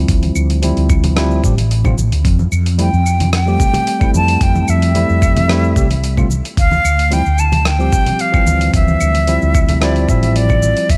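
Set in a digital ambience, this smooth, warm sunset chillout excerpt at 111 BPM rides on a gritty, overdriven sampler-style kit of claves, hi-hat, rim click and shaker over a thumpy electronic kick, with warm acoustic congas in the background, a dark, round fretless bass with ensemble chorus up front, and a clean tine electric piano carrying tape echo and 12-bit sampler grit through Dm11 and Fmaj9 chords, while an airy, bright silver flute with expressive vibrato and tape echo enters at 2.8 seconds to sing the melody.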